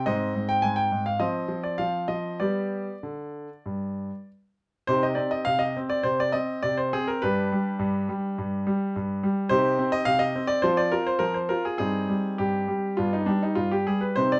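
A clear, up-front concert grand piano plays alone in this restless, elegant excerpt of a classical-period sonatina in 4/4, its smooth, vintage tone reaching into a deep bass under light reverb as a rubato feel pulls the phrases along from an opening on Ab toward a second section at 4.9 s that circles back to C minor before settling on G at 13.0 s.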